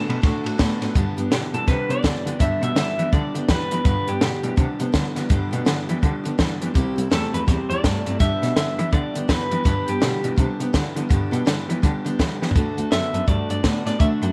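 Upbeat and rowdy, this swinging rockabilly excerpt features a bright, twangy electric guitar melody with tape echo breaking off in phrases, over a slightly broken-up electric riff guitar, a woody, picked acoustic guitar in the background, a veiled bowed cello with portamento on the bass line, and a punchy, up-front cocktail drum kit with dark cymbals that plays a fill at 12.4 seconds, all in a small, lightly reverberant room.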